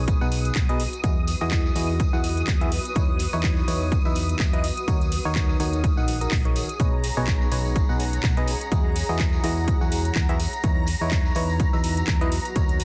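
Piano house cut from a longer piece, feel-good and uplifting, where a biting, percussive FM electric piano riff with chorus, tremolo and dub echo rides over a round, dark FM bass, a silky analog string pad and a cloudy granular pad that enters at 0.9 seconds, while a punchy overdriven kick, house kit with metallic hats and handclaps, and a distant tambourine drive a swung groove that pumps against the sidechained chords of B6/9, Emaj9, C#m9/E and D#m7 in a dense, heavily limited modern mix.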